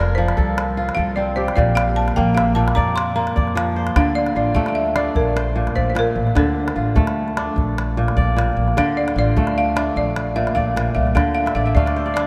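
Bathed in a vast, echoing cathedral reverb, this flowing, warm excerpt of West African string and xylophone music moves at 100 BPM in a straight 12/8: a buzzing, woody balafon carries the melody through a solo in the first 4.0 seconds, a crisp, ringing, fingerpicked kora sits up front spinning arpeggios before a fill at 11.5 seconds, a thumpy pizzicato upright bass on steel strings anchors the low end, and a deep calabash joins at 0.3 seconds, all over chords that shift from F and Bb to D minor.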